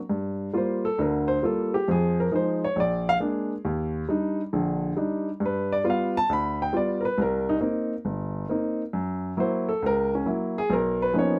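A warm, natural-sounding baby grand piano sits up front and plays alone from 0.1 to 11.4 seconds in this relaxed solo jazz fragment, cut from a longer piece, swinging at 136 BPM in 4/4 through chords that move from Gm7 and Fm7 to Ebmaj7, G7 and Cm7 before closing on Gb7 and Bmaj9#11, with a moderate small-room reverb and a rough home-demo mix.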